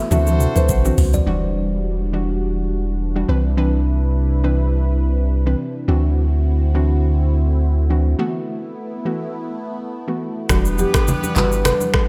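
A deep, punchy sub bass with a pitch-drop attack sits up front in this mellow, sultry afrobeats excerpt at 104 BPM in E minor, alongside an electronic afro-pop kit with knocking kick, metallic hats, snaps, claps, rim clicks, shaker and toms, a soft, round chorused pluck, and a smooth, detuned analog pad moving through Em9, Cmaj9, D9 and B7sus4. A buzzing kalimba riff with tape echo sounds only in the opening seconds, and bright, low-tuned congas, a horn section with light vibrato and a rosewood marimba melody with tape echo frame the opening and return after the break at 10.5 seconds, all set in light reverb.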